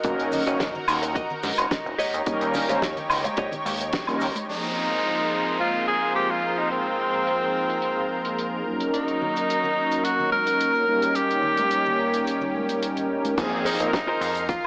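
Feel-good and groovy, this 108 BPM nu-disco excerpt in Ab major opens on mellow, brassy synth brass and a lush, detuned unison pad pumping against a punchy electronic kick, with a damped 70s kit and a glossy pulse-width synth bass, while a clean direct-recorded guitar riff and bright hand-played cabasa and congas sit in the background. After a band accent at 3.9 s, a clear tenor saxophone with light vibrato takes the melody up front at 4.5 s over a downlifter and a filter sweep on the drums, before the kick and bass return for the drop at 13.4 s. The echo-heavy mix sits in a small room ambience with an AM radio sound, its chords moving between Gb6, Eb7 and Ab69.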